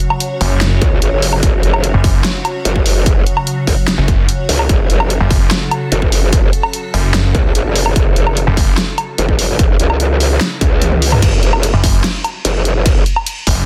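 Driving a half-time 4/4 pulse at 147 BPM, this heavy, menacing wobble dubstep drop in F# minor sits slightly below standard pitch, tuned to A4 = 437 Hz, and is cut from a longer piece. A distorted, layered electronic kick anchors the groove alongside a tape-warm dubstep kit with a huge snare, bright hats, crash cymbal, toms and woodblock, up front and touched with studio reverb, with a drum fill at 10.8 seconds. Two basses dominate: a snarling, detuned sawtooth bass with overdrive and a moving notch holds F#1, dropping out at 8.8 seconds and returning at 11.7, while a wobbling growl bass shaped by a formant filter, chorus and overdrive roams between F#1 and C#2. Behind them, an evolving wavetable pad sustains chords on an F#5 harmony, morphing through ring modulation, phaser, ensemble chorus and its own reverb while sidechain pumping ducks it until it drops out at 11.2 seconds. The mix is dense and heavily limited, dry overall, with the aggressive, saturated bass layers pushed loudest.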